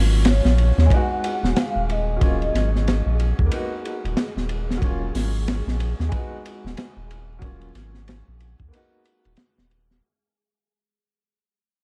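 A felt-muted upright piano and a deep, round sub bass open this hypnotic, cinematic trip hop excerpt in Eb minor at 92 BPM, with a swung 16th-note feel. The piano sits soft and mellow under tremolo, a low-pass filter and tape echo, moving through Ebm7, B6 and Abm7 chords. A crunchy breakbeat kit joins almost at once, up front with a punchy kick, high-tuned snare, hi-hat and ride cymbal, its saturated, gritty tone and rolled-off top suggesting a small room. A pure, breathy sine lead with ensemble chorus and vibrato carries the melody from 0.3 to 3.2 seconds, while a wind-like tuned noise texture drifts in the background from 0.7 seconds, airy and bathed in its own reverb. Vinyl crackle and a dark, warm production colour the whole passage, which fades out across its length.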